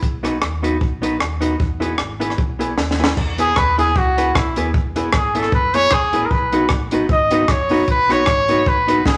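Bouncy, upbeat ska excerpt with a light swing, where a punchy, dry cocktail drum kit with dark cymbals and a high-tuned snare drives a round, amped fingered electric bass and a clean, hollow-body archtop guitar treated with tape echo, until a drum fill at 2.8 seconds ushers in a clear, vibrato-laced trumpet solo at 3.4 seconds, all set in a wet large studio reverb.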